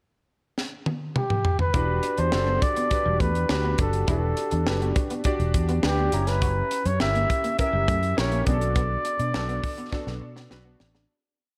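A crisp sixteenth-note studio groove at 103 BPM in straight 4/4 drives this short, polished 1980s jazz-funk pop piece in E minor, its nocturnal, slick mood set from the first seconds as a tight funk drum kit with a high-tuned snare, tight kick and gated reverb plays a fill through the pickup bar starting at 0.6 seconds. The verse arrives at 1.7 seconds, where a dark, round fingered electric bass sits up front with an agile syncopated line and a concert grand piano with deep lows and analog chorus adds syncopated rootless chord stabs dressed with grace notes. Tucked in the background, an electric guitar through a small old amp, slightly broken-up and compressed with its own chorus, picks a muted single-note riff. Above it all, a breathy, whispered flugelhorn, which already entered at 1.2 seconds during the pickup bar, carries an intimate, motif-based melody in sentence-like phrases, with soft attacks, scooped notes and vibrato. 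The harmony moves from Em9 to F#7b9 and settles on Bm7, while a second drum fill and a fade-out close the piece in light reverb.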